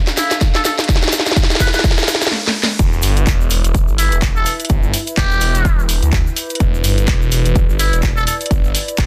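Bouncy and swaggering, this swung bass house excerpt opens with a very quiet riser, a warbling lo-fi pad pumping in the background, and a buzzy, raspy metal-muted trumpet carrying dub echo over a punchy kick, a garage kit with cracking snare, hi-hat and handclaps, and a grainy egg shaker, until the drop lands at 2.8 s with a swirling, thick, phased saw bass up front.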